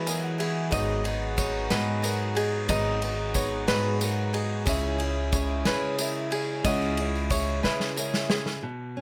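A growly, woody upright bass sits up front in this nostalgic indie folk excerpt, plucked with a dark steel-string bite beneath a gently rolling 6/8 feel. Around it, a boxy, shimmering twelve-string acoustic guitar picks out octave-doubled accompaniment with the odd finger squeak, while a light tenor ukulele adds fingerpicked arpeggios up top. An unplugged drum kit played with bundle sticks brings a punchy kick, medium-tuned snare and dark ride cymbal, joined by a jingly tambourine. Further back, a smooth vintage upright piano with short sustain opens with a brief fill, and a reedy, breathing harmonium holds mellow chords, all under light reverb as the harmony moves from Eadd9 through G#m7 to C#m. A drum fill from 7.6 s carries the section to its close, and at 8.6 s a dark, fingerpicked steel-string acoustic guitar steps forward on its own as the warm arrangement is cut short.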